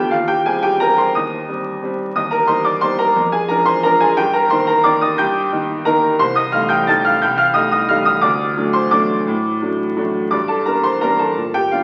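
Bittersweet and elegant, this classical piano waltz in 3/4 at 176 BPM moves with uneven, rubato beats as a lone upright piano, clear, woody and up front across a range from C2 to A6, settles into G minor from 6.2 s, its open tone wrapped in a wet recital-hall reverb and the crackle of a very old 78 rpm record in a brief excerpt cut from a longer piece.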